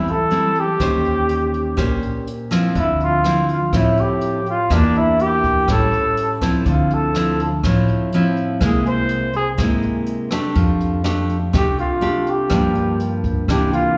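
A dark, distant trumpet with light vibrato and slapback echo carries the wistful, melancholic melody and takes a solo from 6.7 seconds in this bossa nova cut from a longer piece, over fingerpicked nylon-string guitar with a deep classical tone, woody pizzicato upright bass and a brushed jazz kit with a boomy kick and rim clicks, all set in a small club room as if heard through the venue's PA.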